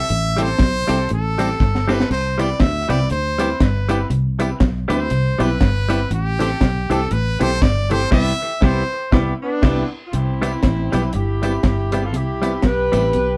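A brilliant, close-miked trumpet opens this cheerful, bouncy ska cut, carrying the melody as a solo over a jangly, detuned honky-tonk upright piano playing stabs and a round, foam-muted fingered electric bass sitting up front. The groove moves at 120 BPM in 4/4 with a light swing on the eighths, built on a dry, dark reggae kit with a high-tuned snare, tight kick, hi-hat, crash and splash, plus a short drum fill at 1.6 seconds. Filling out the band are a clean, compressed electric guitar with tape echo, a very quiet, twangy guitar riff at the edge of break-up, and a jingly, band-limited tambourine tucked in the background. Harmony shifts between Am7 and Cmaj7 in C major, and a band accent leads into the point where the trumpet gives way and a punchy, warm horn section with light vibrato takes the melody at 9.4 seconds. The whole group sounds like it is playing live together in a moderately ambient studio room, and the passage is cut from a longer piece.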